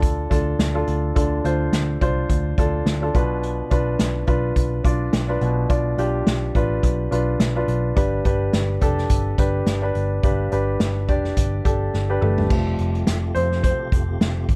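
This piano-driven pop excerpt is dramatic and earnest, moving at 106 BPM in 4/4 with a light swing on the sixteenths and a harmony that passes from D minor through B diminished and G to an Fadd9. A polished grand piano sits up front and carries the accompaniment from the start. A vintage, foam-muted picked electric bass adds a dark, round, amped low end beneath it. An acoustic drum kit played with bundle sticks sounds distant and roomy, with a punchy kick, a medium-tuned snare, shadowy cymbals, hi-hat, crash and toms. A drum fill at 11.9 seconds leads into a new section at 12.5 seconds, where the piano takes a solo and a mellow tonewheel organ enters in the background with sustained chords, key click, chorus vibrato and a fast rotary speaker. The sound is dry, with little reverb overall.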